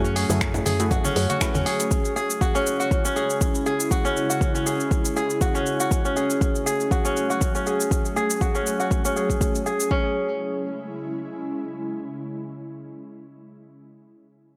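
This driving, spiritual afro house excerpt opens all at once with an ethereal, airy pad holding slow-blooming chords, a crisp, ringing fingerpicked kora playing arpeggios up front, mellow detuned analog keys stabbing in the background, and a woody, round FM bass. The pad, kora, keys and bass all pump against the sidechain. The kora is darkened by a low-pass filter and trailed by digital delay, while the keys carry chorus and delay of their own. The keys, bass and low-tuned, thick-skinned acoustic congas drop out by 1.6 s. A deep, up-front electronic kick and a layered, overdriven deep house kit of finger snaps, hi-hat and shaker carry a lightly swung sixteenth-note groove in a small room ambience until 10.0 s. The harmony moves from F#m9 through C#m and F#madd9 before settling back on C#m, where the pad, washed in its ensemble chorus and built-in reverb, lingers until 12.9 s after the kora stops.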